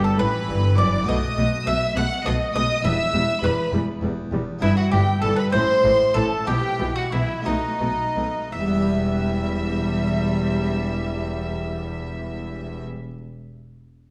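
Set in a straight 6/8 that moves in broad dotted-quarter beats, this stormy, driving baroque-style concerto movement with solo episodes is cut from a longer piece, and it slows down from 3.7 to 8.5 seconds before a new section begins. A picked, double-strung bowl-back mandolin carries the melody, doubled high above by a rich, close violin section with expressive vibrato. A clear, intense second violin section bows its own line in the mandolin's register. Beneath them, a dry, close-miked French harpsichord with two sets of strings fills out the accompaniment, joined by a viola section that sits in the background. The bass is held by distant cellos and a soft-attacked double bass section, and the harpsichord rings on alone until 13.2 seconds. A wet recital-hall reverb and a dark, warm production wrap the ensemble.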